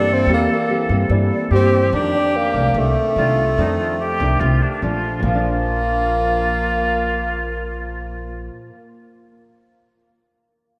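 A straight 4/4 bossa nova pulse at 145 BPM carries this breezy, sunny piece in Bb major, where a breathy, mellow tenor saxophone with subtone, light vibrato, scooped notes and analog delay takes the up-front melody over a distant, airy jazz flute second line with crisp chiff, a fingerpicked nylon-string guitar with old strings and analog chorus, a thumpy pizzicato upright bass on gut strings, and a very quiet concert grand piano with deep bass that plays on alone from 8.8 s to 10.8 s, the whole mix soaked in a lush hall reverb for a dreamy glow.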